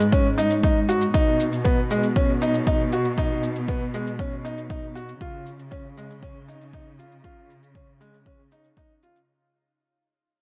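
An overdriven, layered electronic shaker opens the piece, joined a moment later by a deep, overdriven electronic kick drum sitting up front at 118 BPM in a straight 4/4, together setting a steady pulse for this intimate, cinematic piece of piano and strings electronica. Beneath them, a chamber cello section carries the bass line with bowed, expressive playing, its vibrato, soft attack and portamento given a breathing motion by sidechain pumping. A clear, slightly boxy baby grand piano plays the central riff in its middle register, placed close and trailed by tape echo. The harmony moves from G#5 to B at 1.1 seconds and settles on C#add9 at 5.2 seconds. Light reverb and a small-room ambience frame this brief section, cut from a longer piece and fading out across its full 9.3 seconds.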